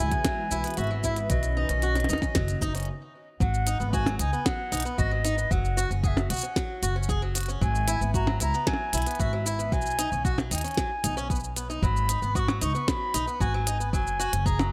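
Delicate and wistful, this folktronica excerpt moves at 114 BPM in G# minor with a straight 4/4 feel, tuned to A4 = 438 Hz. An airy, mellow wooden flute carries the melody with delay over bright, boxy arpeggios from a picked swing-style acoustic guitar, also delayed. Beneath them, a woody, growly pizzicato upright bass sits up front beside a soft, tape-toned electronic kick and a minimal click kit of tiny snare, clicky hi-hats, shaker and percussion blips with an overdriven edge, while a smooth, detuned sawtooth pad with chorus hums in the background until 2.9 s, ahead of a short break and a return of the section at 3.4 s, all set in light reverb.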